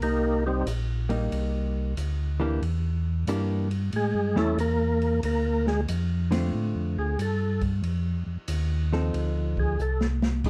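A lightly overdriven, percussive tonewheel organ solos over a round, mellow organ bass line and a boomy, dark-cymballed jazz kit from the start of this bluesy, greasy soul jazz organ trio swinging at 92 BPM, both organs up front through slow rotary speaker and chorus vibrato, with a clean, compressed hollow-body guitar entering at 1.1 seconds to comp through Cm7, Em7b5, A7, Dm7 and F7, and a drum fill from 9.8 seconds closing this dark, lightly reverberant cut.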